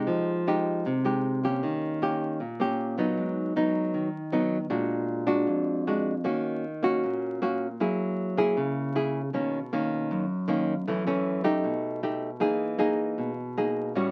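A straight 4/4 bossa nova pulse at 156 BPM carries this smooth, intimate fragment of a longer piece, where a lone fingerpicked nylon-string guitar, warm, woody and classical in tone with the mellow character of old strings, sits up front in a wet club reverb and moves through lush jazz chords like Fm9 and Eb7 before settling into G# minor at 3.2 seconds, all heard through the crackle of a very old 78 rpm record.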